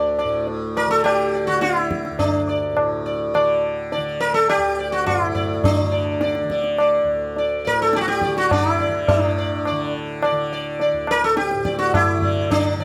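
Radiant and devotional, this short Hindustani classical excerpt in a straight 3/4 sets an up-front, bright sitar with buzzing sympathetic strings over a softly plucked, warm tanpura drone, while a low-tuned tabla with a short, compressed and saturated ring joins at 0.2 seconds, all captured by close, detailed microphones in light reverb, with a new section arriving at 9.1 seconds.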